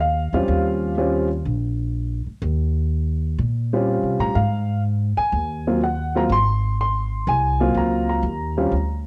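Both instruments enter together at the start of this short cut from a longer jazz piano trio performance, which moves with a playful, sophisticated swing in 4/4. A dark baby grand piano carries the melody with a mellow, smooth and vintage tone, its sound colored by cassette tape. An acoustic upright bass with steel strings is played pizzicato underneath, woody and thumpy. Both sit up front in a small room with light reverb, captured as a home recording on cassette. The harmony moves from Eb13 at 0.5 seconds to Ab13 at 4.4 seconds, then settles on a bare Eb5 at 8.2 seconds just before the clip ends.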